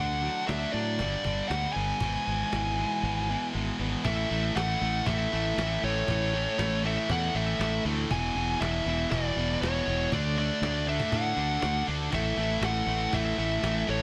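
Cathartic and restless, this cut from a longer quiet-loud alternative rock piece moves at a steady, straight pulse. A fuzz-drenched lead guitar carries the melody in a high register throughout, its tone colored by distortion and a digital delay. Underneath, a searing high-gain guitar riff sits up front beside a growling, overdriven fingered bass, while a woody cajon with faint snares taps along further back in the mix. A dark, lo-fi electric guitar through a small old amp plays broken-up arpeggios at the start, then gives way at 4.0 seconds to a compressed, overdriven electric guitar that plays its own riff. Just before that shift, the cajon's kick and snare drop out at 3.0 seconds. The whole is set in light reverb, with chords moving from D, G and E/G# to A, E, D and finally an A power chord.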